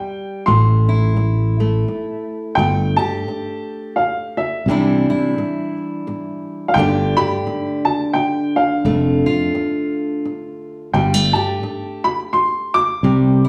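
Gentle and peaceful, this acoustic folk passage, cut from a longer piece, sways at 86 BPM in a swung 3/4, with a dark, mellow, woody upright piano carrying the melody up front over a fingerpicked steel-string acoustic guitar with an auditorium body. A round, direct fretless electric bass enters at 0.5 s beneath chords moving from Am through Gsus2, Cadd9 and Dm/F. A wet studio reverb places the ensemble further back in the room.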